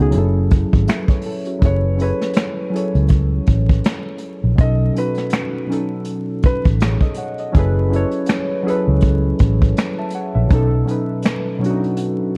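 A lightly swung 4/4 groove of brushed drums, with finger snaps, hi-hat, a punchy kick and a medium-tuned snare, carries this reflective, nostalgic lo-fi hip hop fragment, where round, foam-muted electric bass and mellow, chorused synth keys with cassette tape colour sit up front over F#m11 and B7 changes, a soft upright piano with thin felt and audible action noise sings the melody from 1.6 to 6.6 s, and dark production with vinyl crackle and small room ambience frames the whole.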